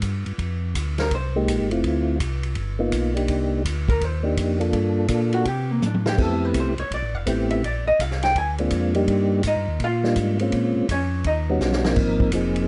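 A soulful, bluesy soul jazz organ trio at a swinging 166 BPM opens with a round, lightly overdriven tonewheel organ bass line turning through a slow rotary speaker, over an acoustic vintage drum kit with dark cymbals, a medium-tuned snare and a tight kick. A clean, picked hollow-body archtop guitar sits up front, chiming in briefly before settling into accompaniment from 3.9 seconds, while a soft, flute-like second tonewheel organ carries the melody with percussive bite and chorus vibrato through rich extended chords from Fm11 to Ab69. Drum fills close each pass at 5.8 and 11.6 seconds, in a dry, dark, warm mix.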